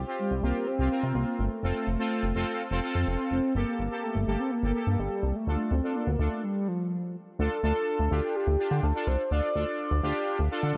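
Nocturnal and driving, this synth-pop fragment, cut from a longer piece, moves in a straight four-beat pulse. A chorused synth bass sits up front with a glossy, nasal, retro tone, its filter pluck giving each note a quick bite before it sustains. Above it, analog synth brass supplies fat, bold chords whose sawtooth sound evolves under a filter sweep, also treated with chorus. A horn-like synth lead carries the melody with a round, detuned voice, a soft attack and vibrato. The harmony moves through Csus4, F, Gmadd9 and Dm, and a stop from 6.4 to 7.4 seconds breaks the momentum before a new section begins, all set in light reverb.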